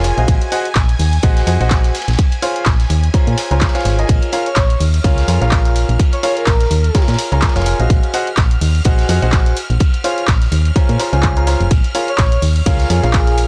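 A punchy electronic kick drives this energetic, bittersweet piano house excerpt at 126 BPM with a 16th-note swing in Bb minor, entering just after the handclaps, hi-hat and ride from a tape-warm analog drum machine and a gritty, saturated garage kit set back in the mix. A round, dark FM bass sits up front with sidechain pumping, under a clear, polished baby grand piano riff with analog delay and shimmering vintage string-machine violin chords in the background. A breathy, flute-like synth lead with chorus and vibrato carries the melody from 4.5 to 7.0 seconds and again from 12.1 seconds, over a cycle of Ab7/Bb, Dbmaj7/Bb and Bbm7, all colored by studio reverb and cassette-tape saturation.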